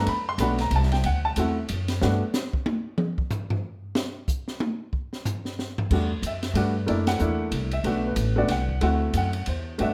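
A close, present upright piano leads this cool, late-night jazz trio fragment, its woody tone and short sustain carrying the melody through a plate reverb. The tune moves at a brisk 185 BPM in 3/4 with a swung eighth-note feel in E minor, opening over B7, Dadd9 and Gadd9 harmonies. A pizzicato upright bass with gut strings and a thumpy character sits up front alongside the piano, while an open acoustic drum kit with dark cymbals, a high-tuned snare and a boomy kick plays throughout. The drums take a solo from 2.0 seconds, and piano and bass return at 5.9 seconds over Em11, F#7alt, Bm7 and D9, with a band accent landing at 7.0 seconds. A moderate, large studio ambience gives the trio an intimate yet roomy sound.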